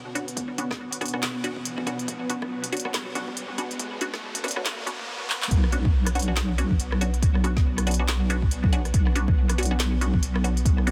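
A dense, heavily limited mix with light reverb carries this cavernous, meditative deep dubstep excerpt at 140 BPM in B minor, where a cloudy, grainy granular pad with vintage sampler grit holds a Bmadd9 chord while muted, resonant dub chord stabs with phaser and echo, a deep house kit with a woody snare and smooth hats, and a layered electronic kick ride a half-time swing as a riser builds to a drum fill at 5.3 seconds and the drop at 5.5 seconds, when a dark, detuned wobble bass with chorus comes up front.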